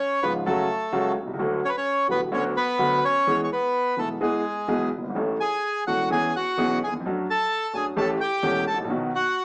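A reedy, dark bandoneon opens at 0.0 s with an elegant, passionate tango melody, close-miked and dry, sitting up front with a full tone. A smooth, vintage-sounding grand piano joins at 0.2 s as accompaniment, reaching down into deep bass registers while the rubato feel lets phrases breathe over chords moving from F#m through D, E, A7 and finally B. The room carries a moderate large-studio reverb and a small-speaker character, and this fragment of a longer piece ends at 9.4 s.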